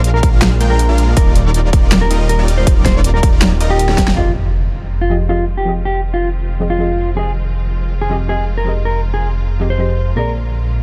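A thick, detuned saw bass sits up front through this bittersweet, dreamy future bass excerpt in F dorian at 160 BPM with a half-time feel, pumping beneath a clean, fingered electric guitar melody with delay, while huge supersaw chords with cassette-tape colour, a punchy overdriven electronic kick and a big-room kit with a huge snare drive the opening drop up to a drum fill and band accent near 4.1 seconds, after which a soft, round chorused pluck, lush bowed strings under a filter sweep and a background impact carry the dark, dry production onward.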